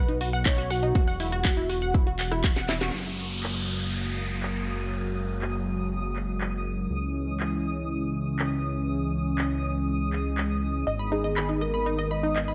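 A straight 4/4 groove at 121 BPM drives this expansive, euphoric progressive house excerpt in F# mixolydian, with a house drum kit of cracking snare, metallic hats, rim clicks and handclaps running throughout, a punchy electronic kick up front from 0.5 to 2.5 seconds, and a fat, detuned sawtooth analog bass pumping beneath. A velvety synth lead with vibrato carries the melody alongside tight, driving arpeggios from a plucky sequenced synth, both dropping out after the opening and returning near 11 seconds, while a drum fill and band accent mark the shift just before 2.9 seconds. From there a smooth, warbling vintage pad with lush chorus sustains chords over a downlifter and a twinkling granular shimmer high above, all set in light digital reverb.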